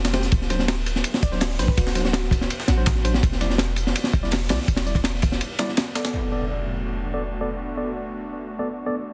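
A crunchy, dark breakbeat kit and a gritty, pitched-up electronic snare with tambourine open this nostalgic, raw drum and bass and jungle excerpt at 165 BPM over a deep, boomy 808-style bass, while a mellow tine electric piano plays lo-fi sampler-grit stabs with dub echo through D7 and Em7 chords and a glassy, crystalline wavetable pluck with chorus flickers in the background, until the bass drops out at 5.4 seconds for a short break, an up-front electronic impact hits at 6.1 seconds on Bm7, and an airy, breathy detuned pad enters at 6.5 seconds in a dense, heavily limited small-room mix.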